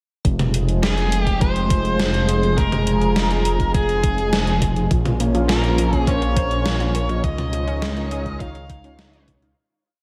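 Nocturnal and nostalgic, this short synthwave piece in F minor at 103 BPM sets a shimmering, sidechain-pumped pulse-width pad and a thick, detuned saw bass over a thumpy machine kick and a tape-toned 80s drum machine whose gated-reverb snare, closed hi-hat and mid tom carry the backbeat, while a distorted high-gain lead guitar with analog delay plays hook phrases from 0.8 s, a round, bright analog pluck adds a drifting 12-step arpeggio loop from 4.9 s and very quiet, dark synth brass stabs in close-voiced dotted rhythms as the chords move from Fm to Bbmadd9 and Dbadd9, all in a dreamy, reverb-soaked mix that fades out from 6.5 s.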